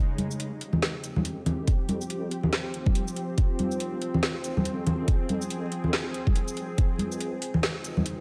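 Dark and brooding, this deep dubstep excerpt builds over a half-time swung groove, where a tense, string-like bowed drone under a filter sweep sustains chords above a deep, wobbling sine bass sitting in the background, while woody-snared garage drums with metallic hats and shaker and a knocking electronic kick entering at 1.7 s and stopping at 6.9 s sit up front, joined by ringing soft-handed congas carrying dub echo, all in a lightly reverberant space dusted with vinyl crackle.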